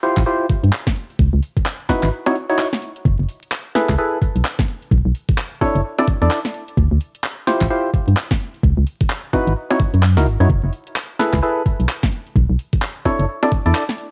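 A dark, hollow organ stab with chorus, cassette tape grit and tape echo opens this bouncy, late-night two-step garage excerpt alongside a swung, tape-warm kit of bongos, handclaps, metallic hats and a cracking snare. From 0.2 seconds a knocking electronic kick and an up-front, organ-like FM bass with sidechain pumping join in, with a brief break at 2.1 seconds interrupting the groove as the stabs move through minor eleventh chords. The home cassette recording carries light digital reverb and a layer of vinyl crackle, and the excerpt runs to 14.1 seconds.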